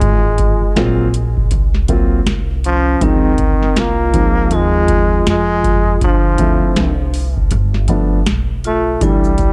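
Jazz-hop with a nocturnal, cool mood, led up front by a brilliant, forceful trombone solo with vibrato, scooped notes and analog delay, over a booming, dry analog drum machine with a deep kick, tonal snare and metallic hats, a woody pizzicato upright bass, a smooth, vintage baby grand piano with long sustain entering at 0.8 seconds, an airy vibraphone ringing softly under its slow motor in the background, and bright maracas that appear only at 9.0 seconds, all within light studio reverb and a dark production.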